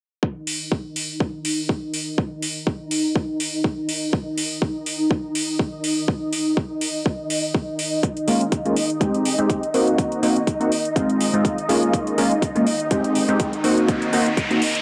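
A lush, vintage string machine opens this joyful, funky slice of filtered disco house, its sustained chords shimmering through phaser and ensemble chorus and pumping against a punchy, up-front electronic kick as a filter sweep runs across the whole excerpt. A metallic, tape-softened hi-hat joins almost at once, riding a gently swung groove and breathing with its own sidechain pump. At 8.3 seconds a bright, detuned polysynth comp cuts in with a plucky, fast attack, chorus, phaser and a cassette-tape tint, carrying the chords through rich, extended harmonies. An electronic riser climbs in from 12.9 seconds to lift the final stretch. The sound is dry and gritty, as if run through hardware and tape, with the drums re-recorded in a small room and everything set in a moderate echo-chamber reverb.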